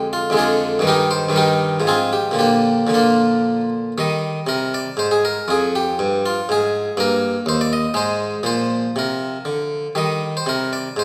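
A classical, baroque-style suite movement in 3/4 for solo harpsichord, this short cut from a longer piece moves at about 110-125 BPM in Eb major with a flowing, serene rubato feel. The harpsichord has a round, plucked Italian-style tone from a single set of strings, sitting up front and spanning Eb2 to Eb5 while the harmony passes through chords such as Fm/Ab and Bb before settling on Eb at 10.0 seconds. A wet recital-hall reverb in a church or concert hall space surrounds the instrument, and the opening phrase is restated from 4.0 seconds.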